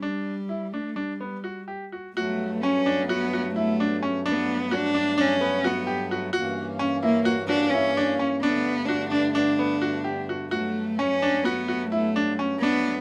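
A warm, expressive bowed cello carries the melody up front, with vibrato and portamento, in this restless yet hopeful excerpt of contemporary chamber music in G lydian, moving in an uneven 9/8 at 258 BPM counted in eighths. A brilliant, intimate baby grand piano plays arpeggios alongside it, also up front, its action noise audible. From 2.2 seconds, a reedy, breathing pedal harmonium joins with sustained chords beneath, over a progression built on Gmaj9, F#7/G and Bm7/G, all set in light reverb with close, detailed microphones.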